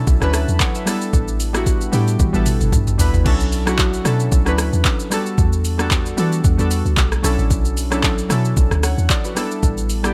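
Round, chorused analog keys built from square and sawtooth tones, with a filter sweep, open this deep, hypnotic amapiano cut alongside a dark, percussive FM log drum bass with a noisy edge. From 0.1 seconds a soft, electronic R&B kit joins with an overdriven, small-room grit, bringing kick, hi-hat, shaker, rim clicks, handclaps, toms and a crash, plus a drum fill between 2.2 and 3.3 seconds. The swung sixteenths and minor eleventh chords sit in a digital ambience, with the keys and drums placed up front.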